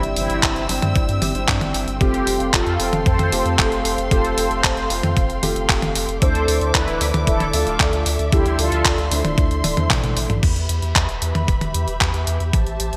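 Bright, 1980s-style digital production with light reverb frames this danceable, melodramatic italo disco excerpt, where a detuned 8-bit drum machine with gated reverb on its toms, handclaps, hi-hat and crash sits up front over a thumpy electronic kick and a round, deep analog bass, lush, woody bowed strings hold sustained chords, a boxy, dark grand piano adds stabs with delay until 10.4 seconds, and a brassy, detuned sawtooth synth brass melody with chorus and digital delay plays until 9.1 seconds before a drum fill leads into a new section.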